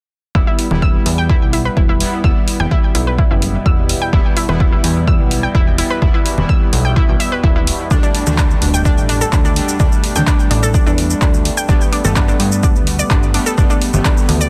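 Melodic techno with a dramatic, cinematic mood, this excerpt drives in straight 4/4 on a punchy, up-front electronic kick and an overdriven deep house kit of congas, handclaps, hi-hat and shaker, while a funky, sawtooth-and-square plucky analog bass pumps underneath. Above it, a round, warbling vintage analog pluck spins bright arpeggios and a fat, brassy, wave-folded analog synth brass fires sustained stabs, both chorused, delayed and sidechain-pumped, moving from Em to Dsus4 at 7.9 seconds and Gadd9 at 11.7 seconds. From 2.1 seconds a very quiet, resonant drone with moving overtones and a phaser hums beneath, all set in a dry, dense, heavily limited modern mix.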